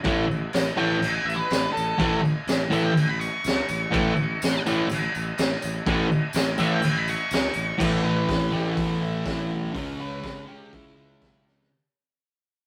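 Garage rock with a rowdy, raw mood, cut from a longer piece and carried by a straight 4/4 pulse. A double-tracked fuzz guitar drives the riff up front, bright and picked, while a raw garage drum kit sits beside it with a punchy kick, a high-tuned snare, hi-hat and crash cymbal, its sound gritty and rolled off on top. A fingered electric bass adds a growly, overdriven low end, and a jingly tambourine rattles in the background until about 7.7 seconds. From 0.8 seconds an octave-fuzz lead guitar takes a dark, distorted solo over the riff, and after 7.8 seconds the music fades out, with a drum fill at 11.5 seconds. The whole take has the rough feel of a rehearsal room, with saturated grain and a moderate reverb.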